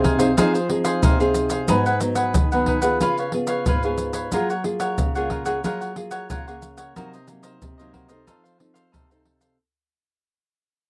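A home cassette recording in a booth with a wet ambience, this short cut from a longer samba and choro piece fades out across its full 9.6 seconds, in F minor at 91 BPM with a straight 4/4 feel. Up front, a crisp, picked cavaquinho with a cassette-tape grain and a warm, fingerpicked classical nylon-string guitar share the accompaniment through a yearning progression from Fm7 through Abm7, Db7 and Gbmaj9 to Cm7b5 and F7. A tight surdo, pandeiro and maracas, close and dry and played with soft hands, keep the mood lively.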